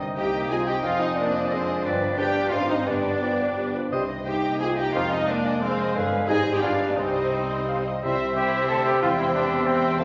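In a rubato triple metre, this restless, stormy classical excerpt sets a lush symphonic violin section in the background on the melody, while a distant studio violin section, a punchy oboe, an airy flute group and a very quiet clarinet weave second lines around it. Intense violas, a dark bassoon and a roomy French horn section hold the inner harmony and sustained chords, a ringing, thumb-plucked harp spins arpeggios, and a very quiet cello section with a smooth, even double bass section supplies the low end. The minor-key harmony turns to a major chord at 8.0 s, and a clear solo trumpet adds stabs from 8.4 s, all bathed in the reverb of a recital hall.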